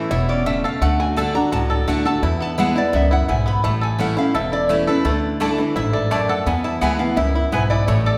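Joyful and virtuosic, this bluegrass excerpt features a nasal, metallic lap resonator guitar soloing with a steel bar over bright, up-front picked steel-string acoustic guitar, twangy banjo arpeggios and a thumpy, woody pizzicato upright bass, with round mandolin stabs arriving at 5.4 seconds, all set in the wet reverb of a recital hall.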